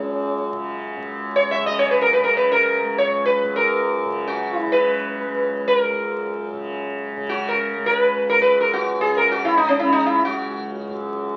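The sound is that of a very old 78 rpm record, with vinyl crackle over a moderate studio reverb that gives the performance a modest sense of space. This brief Hindustani classical excerpt unfolds in free time, its mood solemn and full of longing, tuned with A4 at 443 Hz. The sitar carries the melody from C#4 to E5, sitting up front with a bright, round, plectrum-plucked tone whose sympathetic strings add a shimmering halo. Beneath it, the tanpura holds a softly plucked, buzzing drone between C#2 and C#3, set well back in the balance. Both instruments sound together throughout the 11.4 seconds, the crackle and the old recording lending the sitar's plaintive lines an aged, timeworn quality.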